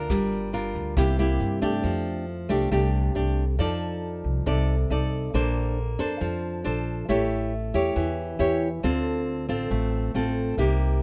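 Relaxed and sophisticated, this bossa nova fragment is carried by an up-front, fingerpicked nylon-string guitar with fresh strings and a classical touch, moving through Gm7, C7 and F69 before settling on Bbmaj9, A7 and Dm7. A woody pizzicato upright bass on steel strings runs underneath for the whole 11 seconds. A dark, smooth brush kit with a punchy kick, hi-hat and rim click plays only from 0.1 to 1.7 seconds, and the dry sound carries little reverb.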